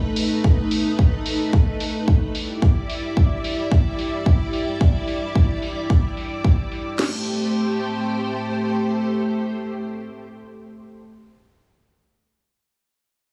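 Groovy and sensual, this nu-disco excerpt moves at 110 BPM in A minor with a light 16th-note swing, tuned to A4 = 438 Hz. A lush, vintage string machine with sawtooth tone, a sub octave and slow attack holds sustained chords up front through B7, Em7 and Am7, its ensemble chorus and sidechain pumping carrying on to 11.0 s. An overdriven house kit with punchy kick, cracking snare and crash plays until 7.1 s alongside bright, filtered electronic hi-hats that drop out at 6.8 s, all within a heavily compressed, radio-like mix with echo-chamber reverb.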